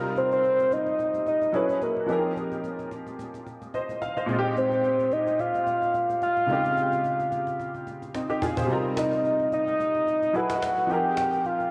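Late-night and hypnotic, this amapiano excerpt moves at 109 BPM in C phrygian with a swung sixteenth-note feel, its chords drifting from Cm7 through Fm11 and Bb13sus4 to Dbmaj9#11. A clear, intimate grand piano with audible action noise and ensemble chorus carries the accompaniment from the start, while a round, octave-layered synth lead with a sub octave, vibrato, chorus and delay carries the melody up front over a woody, band-limited cajon with vintage 12-bit grit that plays a fill at 8.1 seconds. A lush hall reverb with a 2.0-second decay soaks the mix in a dreamy haze.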